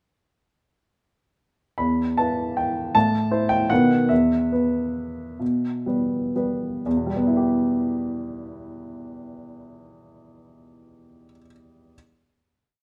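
Set in a large studio with a wet reverb, a warm, natural baby grand piano sits up front in this short, complete classical waltz with a nostalgic, wistful mood. Playing solo from 1.8 seconds, the piano carries a single-line melody over a waltz bass in a flexible rubato, moving from E minor through A minor and B before returning home. The phrase slows from 3.5 seconds and settles onto a final chord at 6.8 seconds that rings on in the room.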